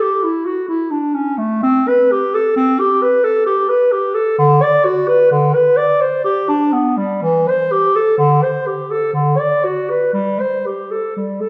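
A dark clarinet carries this brief classical fragment alone, a baroque-style fantasia for the unaccompanied instrument that runs from 0.0 to 11.5 seconds. Its tone is shadowy and distant yet sits up front, ranging from D3 to D5 across the passage. The music moves in 3/4 at about 64 BPM, but the beats are uneven and the pulse bends with rubato, giving the line a dance-like, radiant character despite the sombre colour of the instrument. A wet recital hall reverb with a 1.7-second decay surrounds the clarinet, lending the sound the roomy bloom of a church or concert hall. Tuned to A4 = 439 Hz, the recording is cut from a longer piece.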